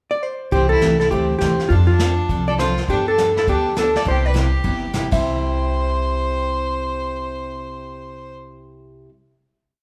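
Playful and down-home, this short western swing piece bounces along at a brisk, swung four. A dark, clean hollow-body electric guitar sits up front with the melody, picking out song-like motifs that start alone in the pickup at 0.1 seconds before the band joins at 0.5 seconds. A clear, intense fiddle bows a harmony line mostly in thirds with light vibrato, while a bright, full-bodied dreadnought acoustic guitar picks a steady four-to-the-bar rhythm. The woody pizzicato upright bass plays a two-beat root-and-fifth pattern with walk-ups, and a vintage kit adds brush sweeps on the snare with dark cymbals and a tight kick until 5.2 seconds. The harmony moves through C6, F6, Gadd9 and Cmaj7 before the group lands on a final C hit, all heard as a live band in a large studio with a moderate reverb tail.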